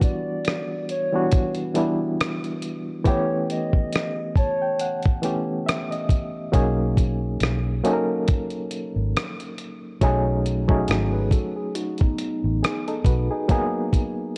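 A lightly swung sixteenth-note groove in 4/4 drives this nostalgic, dreamy lo-fi hip hop excerpt, built on a gritty, compressed, sampler-style soul drum kit with a thumpy kick, hi-hat and rim click, tape-warmed and re-recorded in a large room. A barky, reedy electric piano with light overdrive and fast tremolo carries the chords throughout, while a warbling, detuned synth lead with chorus and vibrato sings the melody until 5.0 s. A dark, round, foam-muted electric bass enters at 6.5 s, and a mellow, clean tine electric piano with analog delay adds a soft second line from 11.1 s, the recording framed by light reverb and cassette-tape grain.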